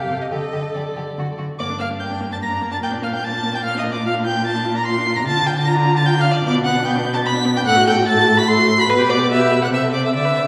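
In a straight, quick triple metre, this restless, stormy classical-period string quartet excerpt sets a smooth, even first violin singing the high melody over a focused second violin line, a rich viola accompaniment and an up-front, warm cello bass with soft attacks and expressive portamento, all four bowed with vibrato and bathed in the wet reverb of a concert hall.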